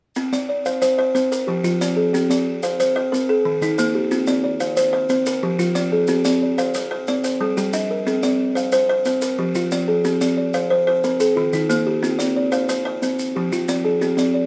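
Southern African traditional music in a hypnotic, mbira-style interlocking cycle at 121 BPM in 12/8, this excerpt from a longer piece sets two buzzing kalimbas playing arpeggios over a Cm–F–Cm–Eb progression in C equiheptatonic tuning: one sits up front, woody and ringing with a vintage, band-limited thumbnail pluck, while the other has a soft, dark, short fingertip pluck from a hollow box, and grainy maracas sound distant in a large room, the whole lightly touched with reverb.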